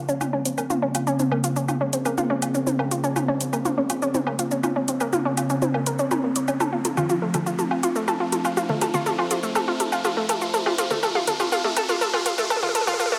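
This hypnotic, driving melodic techno fragment in Bb harmonic minor opens with a resonant, detuned pad holding sustained chords through chorus and phaser, over a round, deep analog bass that sits very quiet beneath it. At 0.1 seconds a nasal, wave-folded analog pluck enters up front with bright arpeggios wrapped in chorus and dub echo, alongside a layered house drum kit of congas, metallic hats, shaker, toms and woodblock. The whole 13.2-second passage is a build-up at 122 BPM in straight 4/4, with a drum fill running throughout and filter sweeps on both the pluck arpeggios and the pad. An electronic riser joins at 2.4 seconds. The harmony moves from Bbmadd9 to F/Bb at 6.6 seconds, and a moderate, lush hall reverb gives the mix a spacious depth.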